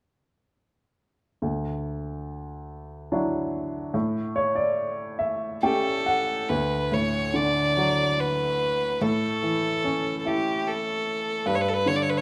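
A woody, polished upright piano opens this tender, nostalgic Celtic slow air at 1.4 seconds, moving rubato in 3/4 around 72 BPM in D major and adding a fill from 3.9 seconds, before an intense, boxy single fiddle with an airy bow and light vibrato takes up the melody at 5.6 seconds, both parts up front in a large studio's moderate reverb, captured live in one room as a cut from a longer piece.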